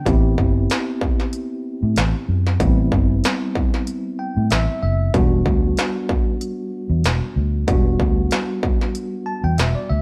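A bell-like tine electric piano and a dark, foam-muted fingered bass open this soulful, mournful soul blues excerpt at 94 BPM in E minor, with a straight-eighth feel and the harmony moving from Am9 to Em9 at 5.1 seconds. An industrial drum kit sits up front with a distorted kick, a clanging snare and smooth hats, while the round, punchy bass anchors the low end. The clean piano adds fills at 3.9 and 9.0 seconds, all heard in a live-room setting with light reverb.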